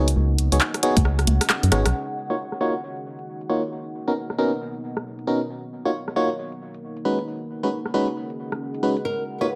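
Glassy, bell-like FM electric piano stabs warbling through chorus, tape and dub echo open this soulful, moody two-step garage excerpt over a hollow, organ-like FM bass that pumps until 1.9 s and a deep, detuned sawtooth pad, while an overdriven analog drum machine of congas, handclaps, hi-hat and rim click swings beneath a tight kick struck at 1.0 s, a filter sweep shapes the piano once the bass falls away, and a fingerpicked flamenco guitar with audible finger squeak slips in at 9.1 s.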